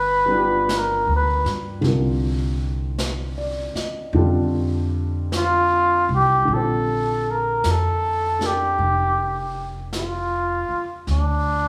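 Romantic and tender, this slow swung jazz ballad in Bb major at 52 BPM features a veiled, breathy cup-muted trumpet with light vibrato carrying the melody up front, soloing through the first 6.5 seconds, over a woody pizzicato upright bass, a dark, mellow baby grand piano and brushed snare and hi-hat, all set in a moderate recital-hall reverb, in an excerpt cut from a longer piece.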